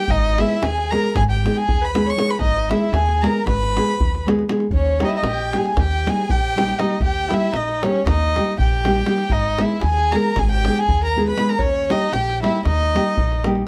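A dark, woody violin carries the vibrato-laden melody up front, bowed sul tasto, over a reedy, gut-string fiddle second line with an airy bow, fingerpicked classical nylon-string guitar, pizzicato steel-string upright bass and a deep, saturated davul in this fiery, virtuosic Balkan wedding-band folk excerpt in 9/8 at 235 BPM (eighths), set in Eb phrygian dominant and moving between Abm and Eb, captured with light reverb and close, detailed microphones.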